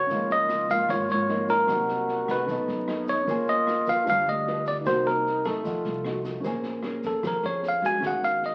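Heard through the crackle of a very old 78 rpm record and a wet large studio reverb, this short bossa nova excerpt in Bb minor moves at 151 BPM in a straight 4/4 with an intimate, wistful mood. A bell-like tine electric piano carries the melody, clean and up front, over a fingerpicked classical nylon-string guitar, a very quiet dark baby grand piano with audible action noise, and a woody, thumpy pizzicato upright bass. An airy alto flute with vibrato and a crisp attack plays a second line until 6.2 seconds. An open jazz drum kit with a boomy kick, rim click and medium-tuned snare sounds smooth and rolled-off beside a grainy, mellow tube shaker. The harmony drifts through rich chords such as Db69, Cm7b5, G7b13 and F7b9 before arriving at Bbm9 at 6.4 seconds, where the electric piano takes a solo that carries on through a final Ebm11.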